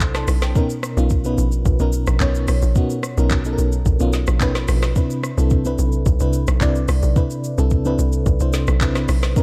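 A straight 4/4 amapiano groove at 109 BPM sets a soulful, relaxed mood in this short cut from a longer piece, where a smooth R&B drum kit with a soft kick, woody snare, metallic hats, rim clicks, shaker and handclaps sits up front beside a hollow, bouncy log drum bass and a full-bodied FM electric piano with tremolo, its chords moving from Cmaj9 to Bmaj9 and back in a dark, warm, dry production.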